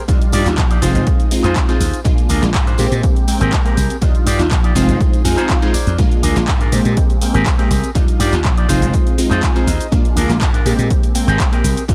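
This is a dry, gritty hardware recording with little reverb, cut from a longer piece of sunny, joyful filtered disco house in a straight four-four feel. An up-front, punchy analog electronic kick drum, re-recorded in a large room, anchors the groove, and a quieter analog drum machine adds handclaps, hi-hat and shaker whose hats, cymbals and percussion pump against the sidechain. A very quiet acoustic tambourine from a small room sits far beneath them, while a bright, direct-and-amped slap bass drives the low end with its own pumping. A funky polysynth comp of detuned sawtooth and pulse waves, with a fast attack, a filter sweep and a moving notch, pumps through chorus and phaser over a looping Ebmaj9, Fm7, Bb7, Abmaj9 progression. On top, a twangy, picked electric guitar runs through an envelope filter to play the riff, and clean electric guitar fills break in at 5.0 and 9.2 seconds.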